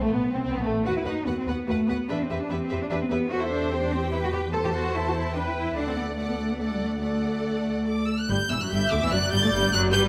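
A close, smooth cello section sits at the front of this spirited, lively classical-period movement for string orchestra, moving briskly in 3/4 at 146 BPM, with a rich, vibrato-laden first violin section carrying the melody high above. Focused second violins, violas with a soft-edged top and an even, sonorous double bass section fill out the bowed ensemble as the harmony shifts from E minor into G major at 3.3 s. A recital-hall reverb gives the passage a spacious, wet sheen, and the recording is a short cut from a longer piece.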